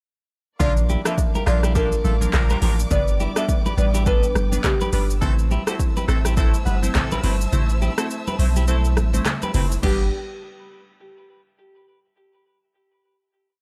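Joyful and breezy, this short afrobeats piece rides a swung groove from an up-front, overdriven deep house drum kit with crash, handclaps, metallic hats, rim clicks and shaker, a deep, bouncy sub bass with slides, and soft-handed congas in the background. A woody marimba hook with delay carries the melody until 5.1 seconds, over glassy chorused wavetable plucks, a twangy clean electric guitar riff doubled in thirds, short riffs from a clear horn section and a smooth bowed string pad with vibrato. The kick drops out at 7.5 seconds, and the piece closes on a final G chord at 9.8 seconds.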